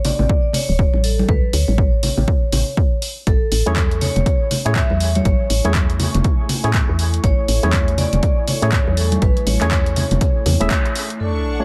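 Sunny, warm deep house at 121 BPM in A major with a swung 16th feel, where a ringing vibraphone melody drifts through diffuse ambient delay over a woody, round FM bass and bright congas, both pumping to the sidechain, an up-front punchy kick, and a tape-tinged analog drum machine of handclaps and hi-hat, while a hollow, chorused organ stab joins at 3.7 seconds, a deep, dark pad enters at 5.1 seconds, and a lush bowed string section arrives with an up-front sub drop as an impact at 11.2 seconds.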